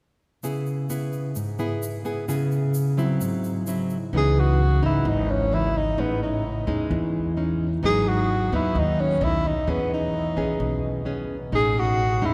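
A fingerpicked nylon-string guitar, up front with audible finger squeak, opens this intimate, smooth bossa nova at 130 BPM in C# minor alongside a grainy, close egg shaker, and at 4.1 s the shaker drops out as a woody, thumpy pizzicato upright bass enters, soon joined by a mellow, breathy tenor saxophone soloing up front with vibrato, subtone and scooped notes over chords such as C#m9, Amaj7#11 and B9, the group ringing in a long cathedral reverb in this fragment cut from a longer piece.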